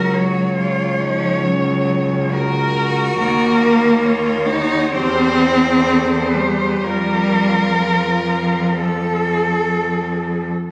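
Four bowed cellos begin together in a melancholic, solemn classical passage for cello ensemble, moving in a rubato 4/4 at 61-71 BPM. An expressive, vibrato-rich lead sings up front with soft attacks and portamento above a focused, close second line, a warm, sliding accompaniment and a smooth-topped bass in the low register. The harmony drifts from Ebm7/Db through C/E to an Fsus4 that settles on F at 8.8 seconds, all heard through a moderate recital-hall reverb with a club-like ambience and the slightly roomy character of a phone recording.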